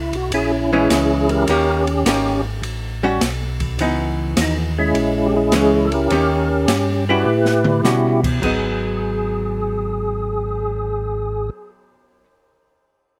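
A swung 104 BPM groove in 4/4 drives this bluesy, late-night soul jazz organ trio fragment in G# minor, where a fat, percussive tonewheel organ carries the melody through slow rotary speaker, chorus vibrato and slapback echo, a round, mellow tonewheel organ holds down the bass, an airy jazz kit with dark cymbals and a boomy kick adds a drum fill at 7.3 seconds, and a dark, compressed hollow-body archtop guitar with slapback echo comps from 0.7 seconds, all captured dry outdoors.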